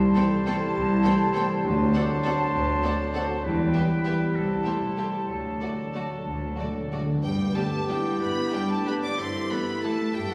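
Festive and elegant, this classical excerpt in a rubato 3/4 sets a clear, lush violin melody over a rich cello section and bright double basses, with an airy flute section, a distant oboe, a mellow clarinet and bassoon, a ringing fingerpicked harp, a warm viola section, a second violin line, very quiet French horn and trombone chords, soft trumpet stabs and a calf-headed timpani fill from 5.3 seconds, all set back in a reverberant concert hall.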